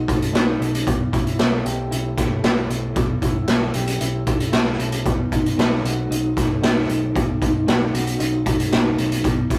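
Psychedelic rock at 115 BPM in 4/4 with a straight feel, this short cut from a longer piece sets a hypnotic, trippy mood. An electric guitar through a small old amp carries the riff from the start, its slightly broken-up, compressed tone pulsing with tremolo across a range from B2 to G4. A deep dub picked electric bass sits on a low B1, dark, round and punchy, while a raw garage drum kit enters at 0.1 seconds with hi-hat, boomy kick and a medium-tuned snare, sounding gritty and up front with a rolled-off top. The harmony moves from B7 to A5/B at 0.9 seconds and back to B7 at 5.1 seconds. The whole take has the rough character of a rehearsal room, with light reverb and warm saturation.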